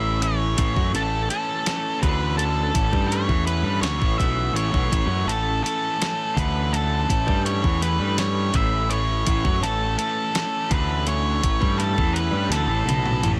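Carefree and upbeat, this short indie rock passage in 6/8 sits on a single A chord, with a dark, fuzzed-out octave lead guitar carrying the melody up front over a growling, overdriven picked bass. Beneath them, a bright, compressed fuzz guitar with lush chorus and a raw overdriven garage guitar in the background play riffs, while a clean 12-bit drum machine with a thumpy kick and fat snare enters at 0.2 seconds and closes with a drum fill from 12.5 seconds. The mix is dry of reverb but echo-heavy, with analog delay trailing all three guitars.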